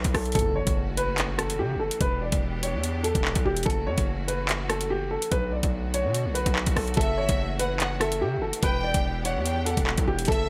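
A half-time drill beat at 145 BPM drives this menacing, dark hip hop excerpt in F# phrygian, its drum kit up front with a knocking kick, metallic hats, handclaps and rim clicks beneath a saturated, heavy 808-style bass that decays under distortion. A worn, boxy grand piano carries the melody through a subtle chorus, low-pass filter and delay, while a lush, bowed string section enters at 0.4 seconds with sustained chords over F#m7, Em7 and Bm7, joined by a very quiet electronic impact. At 7.0 seconds a smooth violin section adds a second line with delay, all set in a small room with light reverb and bright 1980s-style digital production.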